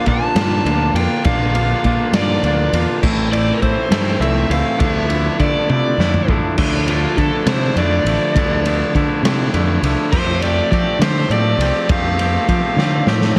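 This restless, cool indie rock piece in 6/8 moves at 68 BPM in D minor and is cut from a longer piece. It opens with a crunchy overdriven guitar carrying the melody over two riffing guitars: a clean, twangy one up front, and a lo-fi, slightly broken-up one sitting in the background, played through a small old amp with lush chorus. A growling fingered bass, bright and driven, and a raw garage drum kit enter almost at once. The kit sits up front, saturated and gritty with a punchy kick, medium-tuned snare, crash, ride and toms, its top rolled off in a stone room. The chords move from Bb through Am to Dmadd9, and a drum fill leads into the second section at 6.6 seconds, where the chorused guitar stops and a guitar solo takes over as the harmony later shifts to Fadd9. Another fill closes the clip, and the mix carries studio reverb and a heavily compressed, radio-like sound.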